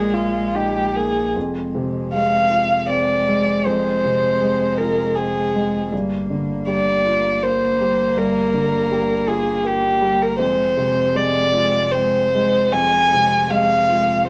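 In a rubato 3/4 at around 79 BPM, this fragile, melancholic neoclassical fragment for piano and strings sits in F dorian, tuned slightly low to A4 = 437 Hz. A single dark, woody violin carries the melody up front, bowed sul tasto with vibrato and sounding close, moving between F4 and Ab5. Beneath it, a lone cello holds a quiet second line between Ab3 and Bb3, its tone warm and airy with a soft attack and light vibrato, set in the background. A felt-muted upright piano supplies intimate, mellow accompaniment, its thin felt and audible action noise giving the sound a natural, close-up character. A clean, smooth sine sub bass sustains low under everything, deep and faint. The harmony opens on Bb7sus4, settles on Fm at 1.4 seconds, moves to Gm7 at 5.9 seconds and returns to Fm, all framed by a wet studio reverb in this short cut from a longer piece.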